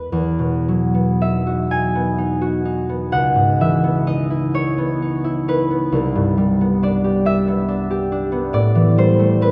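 Moving in a rubato 6/8, this graceful, peaceful classical excerpt features a solo concert harp, fingerpicked and ringing, sitting up front across a range from C2 to G#5. The harmony moves from Emaj9 to C#m9, then Cmaj9 at 5.9 seconds and Am9 at 8.5 seconds. A long church reverb and a dark, warm production give the acoustic harp a spacious glow.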